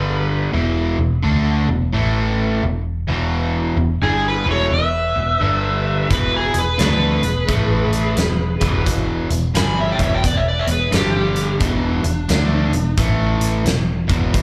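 A swaggering, raunchy blues-rock and southern-rock clip from a live club gig opens on a swung groove, with a bright, slapback-echoed overdriven slide guitar carrying the melody over a crunchy, double-tracked riff guitar and a round, foam-muted fingered bass; a dark, distorted lead guitar slips in quietly behind at 4.0 seconds, a huge arena drum kit with a fat snare and punchy kick arrives at 6.1 seconds, and the slide drops out at 11.6 seconds.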